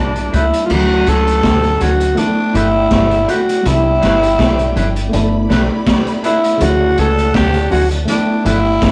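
At 81 BPM in 4/4 with a gently swung sixteenth feel, this tender, sweet lovers rock reggae fragment in D major rides on a round, punchy fingered dub bass and a crunchy breakbeat kit, with its high-tuned snare and tight kick, that enters at 0.2 s, joined at 0.3 s by very quiet, bright congas and twangy, scooped electric guitar stabs in the background. A raspy, growling tenor saxophone carries the melody up front with light vibrato, while a worn, slightly out-of-tune tine electric piano with light overdrive supplies the accompaniment and a very quiet, lush bowed string section traces a smooth second line. The chords move from A9sus4 through Dmaj7, G69 and Cmaj9, and the whole piece sits in a rough rehearsal-room recording with saturation and a short, wet studio reverb.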